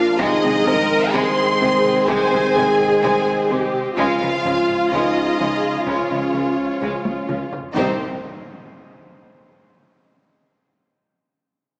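A wet, reverberant scoring-stage sound with a small-speaker quality frames this relentless, vast hybrid orchestral and electronic film cue at 127 BPM, where a rich, distant violin section carries the melody over a lush second violin line, a close viola section with portamento, mellow horns and trombones holding chords, an evolving, warbling wavetable pad, a dark analog bass riff, soft plucked arpeggios, very quiet cellos and double basses, and hard-stick taiko that ends in a drum fill before an electronic impact lands at 7.8 seconds on a C minor chord.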